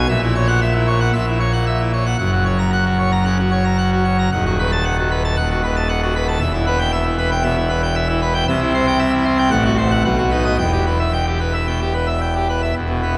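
Heard within a resonant church acoustic with a long, wet reverb tail, this excerpt from a classical organ toccata opens on a pipe organ registered as full organ, its mixtures lending a brilliant, majestic sheen and a touch of chiff at the start of each note. The organ plays solo and sits up front in the sound, spanning a vast range from the deepest pedal register up into the high treble. The mood is dramatic and stormy, driven by a straight, steady pulse in common time. The harmony builds tension on dominant sonorities before settling into a minor tonic at 6.4 seconds, then moves through a major chord and a diminished chord back to the dominant and a final minor resolution at 10.6 seconds. The baroque voicing and the cathedral-like decay give the passage a grand, imposing character as the music rings out around 13.2 seconds.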